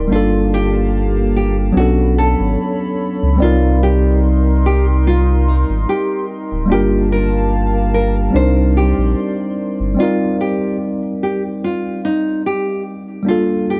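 Dark, lightly reverberant production with a rolled-off top end frames this reflective, melancholic hip hop excerpt, which moves with a gentle swing through ninth chords such as Gm9 and Cm9. A worn, slightly out-of-tune tine electric piano with cassette-tape colouring carries the accompaniment up front beside a deep, round sine sub bass, while a warbling, detuned lo-fi pad with chorus and phaser hovers behind; the bass and pad both drop out at 10.0 s. A fingerpicked nylon-string guitar with a filtered, classical tone plays the melody throughout.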